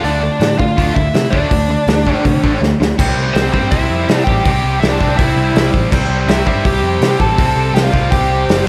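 A bluesy, distorted lead guitar melody opens this aggressive, urgent punk rock cut at 163 BPM in straight 4/4, riding over a bright, double-tracked overdriven guitar riff, a growly picked electric bass and a loose acoustic drum kit with a punchy kick and dark cymbals, while slapback echo colours both guitars, a lush hall reverb lends a big arena sound, and a drum fill from 2.6 s carries the shift from D minor to C at 3.0 s.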